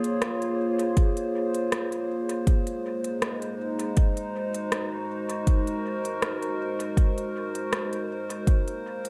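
A deep, up-front electronic kick drum anchors this meditative, spacious ambient dub excerpt at 80 BPM in 4/4 with a light 16th-note swing, entering at 1.0 seconds beneath a warbling, nostalgic pad of detuned square and triangle tones with a sub octave, chorus and built-in reverb, which holds mellow, slow-attack chords from Bbm9 to Ab9 and finally Bbsus2. An organic electronic kit adds crisp hi-hats and rim clicks soaked in dub echo, heard from a large room, while the kick sits tape-toned in a small one. The echo-heavy mix carries only light reverb.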